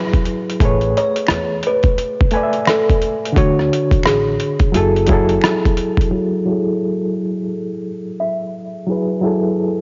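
A swung sixteenth-note groove at 87 BPM in 4/4 sets a nostalgic, reflective lo-fi hip hop mood in F# minor. Muffled, pitched-down sampler drums with a thumpy kick, hi-hat and rim click sit up front with overdrive. Beneath them, a woody pizzicato upright bass and a very quiet, close finger snap fill out the low and high ends. A reedy, overdriven electric piano with fast tremolo carries the F#m9, Amaj9 and Dmaj7 harmony, while a ringing, hollow-boxed kalimba plays the melody. The drums drop out at 6.1 s as a filter sweep runs to the close of this cassette-toned fragment, with its soft room reverb.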